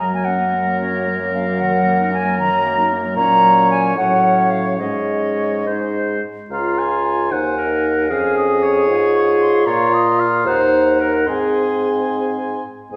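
In 6/8 at 69-77 BPM to the dotted quarter, played with rubato, this lively, graceful classical-period movement for wind quintet is cut from a longer piece and shifts to a new section at 6.5 seconds. The silver concert flute carries the melody with a pure, metallic straight tone and crisp attack, while the oboe's second line is soft-edged, with light vibrato. The clear clarinet and warm French horn supply accompaniment over the bassoon's bass, all heard in a reverberant recital hall.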